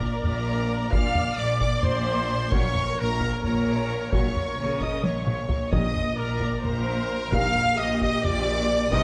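Driven by taiko drums at 262 BPM in a lopsided 7/8, this adventurous, triumphant orchestral film-score excerpt sets a lush violin melody high above a hollow, airy flute and a second violin line, while violas with portamento fill the middle and rich, distant cellos and double basses anchor the bass. Distant trumpet stabs ring clear, and from 0.9 s a tight, very quiet trombone section and mellow French horns add sustained chords as the harmony moves from Bb through Gb/Bb to Eb/Bb. A drum fill at 5.0 s leads into a brief, dry timpani passage at 5.7 s, all set in a moderate scoring-stage reverb.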